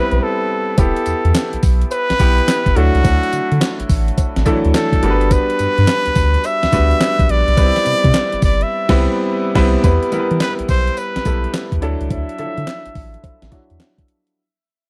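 The recording is dry and close, with the intimacy of a 1970s studio and little reverb, in a short excerpt cut from a longer piece of confident, slick new jack swing R&B at 106 BPM in 4/4, its sixteenths swung. A gated 80s digital drum machine drives it with a thumpy kick, an overdriven, gated-reverb snare, handclaps, hi-hat, tambourine and crash, sounding like sampler hits re-recorded in a small room, while a faint, metallic cowbell ticks along from 0.8 seconds. Underneath, a round analog bass with a deep, triangle-like tone and fast attack holds sustained low notes, and a clear, polished concert grand piano plays the accompaniment up front through a low-pass filter over a progression moving from Cmaj7 through Em, Dadd9 and Gmaj7. Leading the arrangement, a close-miked jazz-style trumpet with light vibrato carries the melody, colored by a low-pass filter and tape echo. After a brief break near the start and a band accent with the kick muted from 8.7 seconds, the second section at 9.8 seconds brings a filter sweep as the track fades out.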